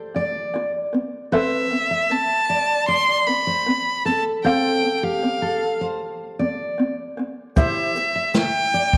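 A straight 4/4 pulse at 77 BPM carries this sunny, heartfelt acoustic pop excerpt, with a fingerpicked ukulele accompaniment and a full-bodied, jumbo steel-string guitar picking arpeggios, finger squeaks and all, over chords moving from Dm through Amadd9 and F to C. A clear, smooth violin enters at 1.3 seconds with a close, vibrato-rich bowed melody, while a jazz brush kit of boomy kick, shaker and snare joins at 7.6 seconds, sounding roomy and distant. A wet echo chamber reverb lends the recording a spacious glow.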